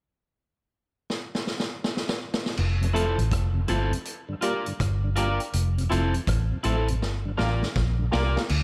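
Roots reggae with a laid-back, swung feel, cut from a longer piece: a vintage drum kit with dark cymbals, tight kick, rim click and dub echo opens with a fill at 1.1 seconds, and a round, punchy foam-muted bass with tube saturation joins up front at 2.6 seconds as the chords move between Fmaj7 and Gm7. A clean tonewheel organ with key click and slow rotary speaker enters at 2.8 seconds, and from about 2.9 seconds a slightly broken-up, twangy picked electric guitar with tape echo and a deep, detuned sawtooth chord stab with phaser, sitting in the background, fill out the accompaniment. A second drum fill arrives near the close, all within a small room ambience.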